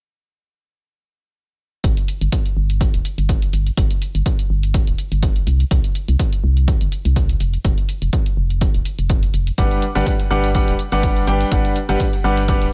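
Piano house at 124 BPM in G major with a joyful, euphoric lift and a light swing, where a punchy, up-front electronic kick and an electronic hi-hat sit alongside a dark, hollow, organ-like FM bass with tube saturation, sidechain pumping and a filter sweep from 1.8 seconds, before a brilliant, long-sustaining concert grand piano riff with dub echo and pumping arrives at 9.6 seconds over a Gmaj7 chord, joined by bright, vintage tambourine and congas in the background, all in a dry mix cut from a longer piece.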